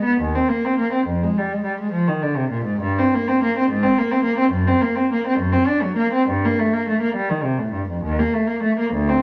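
Set in a moderate stone-room reverb, this short cut from a longer baroque-style suite movement for solo cello unfolds at 69 BPM in a flowing, solemn 6/8 with uneven, rubato beats, its dark, woody bowed tone and vibrato moving from C minor to G minor at 4.5 seconds.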